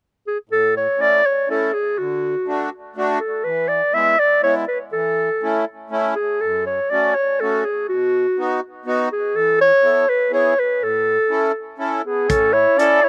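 A mellow, smooth-topped clarinet carries the melody up front in a classical style, with a slapback echo, while a reedy accordion with slow beating supplies the accompaniment in this bouncy, jolly alpine folk dance piece in 3/4 at 123 BPM, taken with a rubato feel in A major. The dry, outdoor sound has little reverb, and the chords move from A through D, E, F#m and B before settling on Esus4, E and back to A. Near the end of this short cut, a distant, roomy trumpet adds a second line from 12.0 seconds, and a gritty, saturated drum kit with a punchy kick and hi-hat appears briefly at 12.3 seconds.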